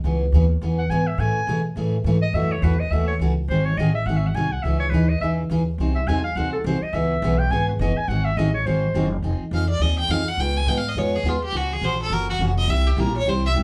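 Picked steel-string acoustic guitar and pizzicato upright bass open this bittersweet, virtuosic stretch of jazz manouche, cut from a longer piece and swinging at 209 BPM in 4/4. The jumbo guitar sounds full-bodied and fresh-stringed, with audible finger squeak, while the bass gives a woody, dark foundation, both placed up front. At 0.8 seconds a clear clarinet takes a jazz-style solo in C# minor, its light vibrato and subtone keeping it present over the rhythm section. When the harmony shifts to F minor at 9.2 seconds, a single bowed violin enters at 9.5 seconds for its own solo, nasal and earthy with an airy bow and a gentle vibrato. The band plays live together in one room, and a wet studio reverb surrounds the whole ensemble.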